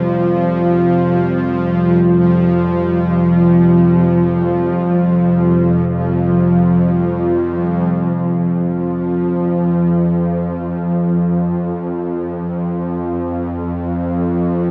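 A nasal, string-like bowed drone sits up front through the whole 14.7 seconds, its sawtooth tone carrying vibrato, a layer of noise and its own reverb in a tense, cavernous dark ambient excerpt in free time, tuned to A4 = 438 Hz. Behind it, a detuned, evolving pad with chorus, shimmer reverb and a filter swell holds an Fsus2 chord until 7.9 seconds, after which the drone carries on alone as the chord drops away. A vast cathedral reverb and the warbling pitch drift of worn cassette tape give the sound an unsettling, decayed quality.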